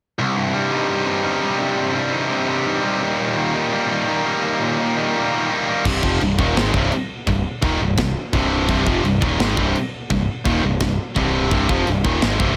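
Lightly reverberant and cut from a longer piece, this dark, aggressive heavy metal track opens at 0.2 seconds with two bright, picked electric guitars placed up front, one heavy and high-gain, the other tight and distorted, playing a riff over Cm and Eb. At 5.8 seconds a punchy, overdriven fuzz bass joins. At 5.9 seconds a double-tracked, scooped guitar enters in the background alongside an acoustic metal kit in a big room, its crash cymbals, medium-tuned snare and tight kick sitting mid-forward.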